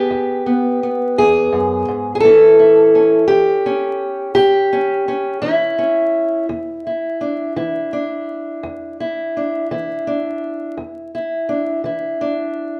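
Acoustic country blues in 12/8 with a gritty, rollicking mood: a lone fingerpicked steel-string parlour guitar, dark and boxy and set up front, moves from E to A7 at 2.2 seconds and onto Dsus2 over E at 6.5 seconds in this short cut from a longer piece, heard in a large studio room with moderate reverb, a live-in-one-room feel and a layer of vinyl crackle.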